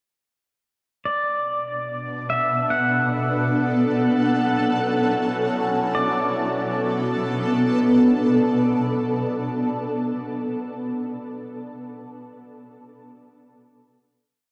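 A slow, straight 3/4 pulse at 74 BPM carries this brief, melancholic and spacious ambient piece in B minor, which moves from Bm7 to F#m7 before settling back on a closing Bm7 at 5.9 seconds. A pedal steel guitar enters at 1.1 seconds with a bright, twangy, clean melody built from short call phrases, played with fingerpicks and slide and shaped by volume swells, compression and a diffuse ambient delay. Beneath it, a shimmering ambient pad sits up front with sustained, slowly shifting chords, its ethereal, granular tone lifted by an octave-up shimmer and colored by chorus, phaser and its own reverb. From 3.8 to 6.0 seconds, a breathy, wind-like tuned noise texture holds a single high note in the background, mellow and airy under its own reverb. The whole recording is drenched in a huge, wet reverb that suggests a vast, echoing space, and it carries the character of cassette tape.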